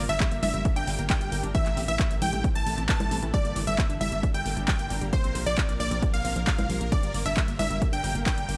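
A dry mix opens this short slice of emotional, driving uplifting trance at 134 BPM in G dorian, moving through Gm, Am, Gm, Bbsus2 and back to Gm across 8.6 seconds. A bright, detuned supersaw stab carries the melody with tape echo while a lush unison pluck plays a second line in the same register, a very quiet pluck with a noise layer runs delayed arpeggios beneath, and a shimmering, ethereal pad with chorus, phaser and its own reverb holds sustained chords in the background. Underneath, a round, dark FM bass sits with an overdriven big-room dance kit of congas, handclaps and metallic hi-hat, a punchy, tape-warm electronic kick sits up front, and sidechain pumping moves the pad, bass, stab and arpeggios.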